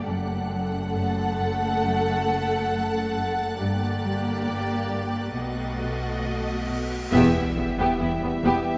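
Eerie and mysterious, this short passage from a cinematic suspense score moves at a slow 68 BPM in 4/4, cut from a longer piece and set in F# phrygian. Bowed violin sections carry a focused melody and an expressive second line, while violas fill in the accompaniment, and a faint, high violin texture hovers above until about 6.7 seconds. Underneath, cellos and double basses hold a rich bass, and a second cello section plays a riff in the background, all with vibrato. The harmony moves from F#m through Gm and B7 to Em. A huge, dark cymbal swell begins at 5.5 seconds and leads to an impact at 7.1 seconds, where mellow French horns and distant trombones enter with sustained chords. The whole ensemble sits in a vast, echoing space with a long cathedral reverb.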